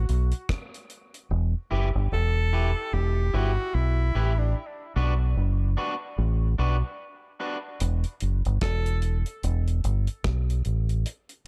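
Dark, small-room production frames this spacious, hypnotic dub reggae excerpt in E minor at 74 BPM with a swung feel: a round, up-front fingered electric bass anchors the low end, a dry reggae kit of tight kick, hi-hat and rim click drops out at 1.3 seconds and returns at 7.8 seconds, a twangy, slightly broken-up picked electric guitar with a high-pass filter and dub echo fills the middle, and a bright, vibrato-laden pop-style tenor saxophone solo drifts through dub echo until 9.0 seconds.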